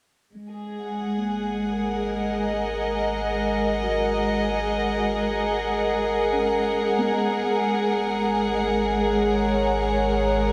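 Spacious and serene, this ambient excerpt unfolds at an unhurried pace in straight 4/4, cut from a longer piece. A dark studio string section sits up front from 0.3 seconds, holding sustained chords with light vibrato, a soft attack and a hushed sul tasto bowing that feels intimate and close. Beneath it, a round analog bass with a deep, nasal sine-like tone holds a single low note, fading in across the whole passage. From 1.2 seconds a felt-muted upright piano adds very quiet arpeggios, its mellow, vintage timbre softened by thin felt. The harmony rests on one G#7 chord with its third omitted, and a huge, wet reverb places the ensemble in a vast, echoing space.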